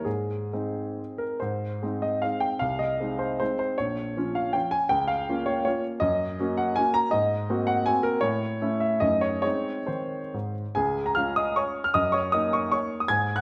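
A clear, intimate grand piano plays alone and up front, its action noise audible, in a proud and graceful romantic triple-time dance built on dotted rhythms and shaped with free rubato. Cut from a longer piece, the passage opens with a brief statement before moving into a contrasting middle stretch, shifting to a new key centre at 6.0 s, and returns to the opening material at 10.8 s. The piano sits in a wet recital hall reverb that adds a natural sense of space around its sound.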